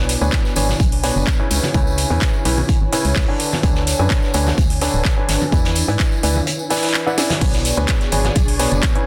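A dense, heavily limited mix of piano house at 127 BPM in B dorian, this soulful, energetic excerpt sets a bright, up-front baby grand riff with audible action noise, pumping through a low-pass filter and tape echo, over a hollow, organ-like FM bass, an ethereal background pad, a punchy kick, a house kit with cracking snare and metallic hats, a gritty vintage kit, ringing distant tambourine and congas, and a silky analog string pad that enters at 7.6 seconds just after a drum fill at 7.2 seconds, as the chords move from Bm69 through C#m7 and E7 back to Bm69.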